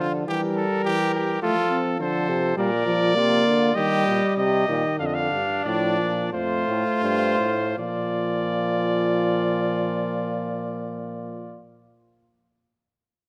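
Close, detailed microphones capture a brass quartet in a concert hall, whose moderate reverb lends a gentle bloom to the sound. This elegant, joyful excerpt from a classical imitative canzona sits in Bb major and 4/4, with a straight feel at 78-105 BPM, and it slows down from 1.4 to 7.8 seconds. A warm, smooth-topped cornet carries the melody up front, while a mellow trumpet with light vibrato supplies the second line. Beneath them, a euphonium with light vibrato and a smooth top fills out the accompaniment, and a bass trombone with soft attack sounds distant and roomy in the bass. All four parts play together throughout the clip, moving through chords such as F, Bb and Eb before a new passage begins on Bb at 7.8 seconds.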